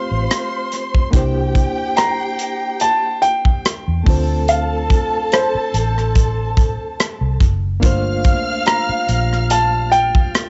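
A warm grand piano carries the melody from the start over dark, lush bowed strings and a barky, reedy electric piano with light overdrive and fast tremolo, while a round, foam-muted electric bass and a tight, polished drum kit of hi-hat, kick and rim click sit up front in this romantic, smooth 1970s-style soul groove at 72 BPM with a gentle 16th-note swing. Soft, bell-like glockenspiel touches ring in the background at 2.0 seconds, and a mellow French horn section adds sustained chords from 7.8 seconds as the harmony moves from Fadd9 through C7 and Dm7 to Gm11. The whole piece has the hazy, muffled sheen of a home cassette recording with light reverb, cut from a longer piece.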